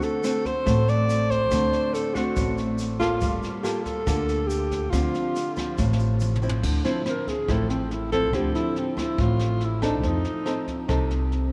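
A straight 4/4 bossa nova pulse at 141 BPM in D minor carries this smooth, wistful excerpt: a dark, fingerpicked nylon-string guitar and a mellow alto saxophone with vibrato and scooped notes sit up front, a brushed jazz kit with a boomy kick keeps time, a grainy, bright, distant tube shaker plays until 6.6 seconds, a thumpy, woody pizzicato upright bass joins at 0.7 seconds, and a drum fill at 5.8 seconds leads into a subtone-tinged sax solo over chords moving from D7 toward F7, all set in a vast, echoing cathedral reverb.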